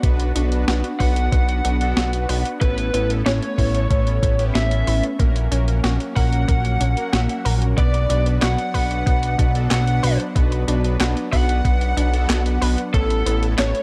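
Cinematic and moody, this synthwave excerpt moves at a steady straight pulse over a dark production with little reverb, built on a fat, up-front analog bass, a thumpy electronic kick and a clean 12-bit drum machine with handclaps, hi-hat and a medium-tuned snare, both drum parts tape-warm and re-recorded in a small room. Behind them sit a lush, detuned unison pad holding sustained chords with sidechain pumping, a round, nasal analog pluck playing arpeggios, and bold, warbling analog synth brass stabs, with chorus on all three and digital delay on the pluck and brass. From 1.0 seconds a dark, overdriven lead guitar through a small cranked amp carries the melody with delay, shadowed in the background by an airy, dreamy detuned lead on a second line, as the chords move from Bm through Aadd9 and F#/A# back to Bm.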